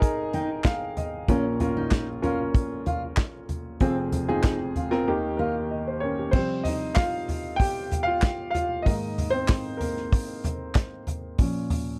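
A dry, close 1970s-style studio sound frames this hopeful, warm piano-driven pop excerpt in Ab major at 95 BPM and a straight 4/4, where an up-front, natural baby grand piano opens with a fill and takes a solo from 6.3 seconds, an unplugged drum kit with dark cymbals, a medium-tuned snare, a punchy kick and bundle sticks keeps time, a full-bodied fingerpicked jumbo steel-string acoustic guitar with audible finger squeak plays a riff until 5.5 seconds, and a very quiet, crisp group handclap adds percussion.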